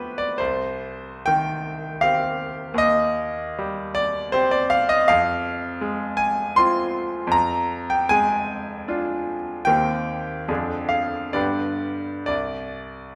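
This romantic classical nocturne for solo piano, in C minor and 3/4 time, moves with a flexible rubato that drifts between 62 and 83 BPM, setting a wistful, mournful mood. A single grand piano carries everything across the full 13.2 seconds, ranging from C2 up to C6, with a bright, polished tone that sits up front and present, its notes having a short sustain. The harmony unfolds from C minor through F minor and a diminished chord over F, returns to C minor over E-flat, and arrives on G at 11.4 seconds before the harmony falls away at 12.3 seconds. A moderate recital hall reverb with a 1.6-second decay gives the brilliant piano sound a natural sense of space, and the instrument is tuned slightly low, to A4 = 439 Hz. The passage is a brief section lifted from a longer piece, ending just after that unresolved dominant.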